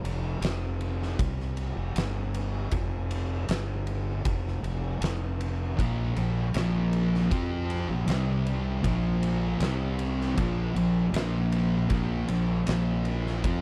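A dry, close sound gives this stoner and doom metal excerpt a heavy, hypnotic and ominous weight at a slow 78 BPM in straight 4/4. From the start, an overdriven, growly fingered electric bass sits up front between F1 and F2, joined by an oversized, low-tuned acoustic drum kit with a boomy kick, fat snare and dark ride cymbal, its pumping big-room character saturated and gritty. The opening rests on an F5 power chord before the harmony drops away into an unaccompanied groove of bass and drums from 2.0 seconds. At 5.8 seconds two thick fuzz guitars enter in the background, one darker and one warmer, both distorted and picked across a range from Bb2 to F4. Their riff shifts between Bb5 and C5 power chords, sustaining the brooding, trance-like pull until the cut ends at 13.6 seconds.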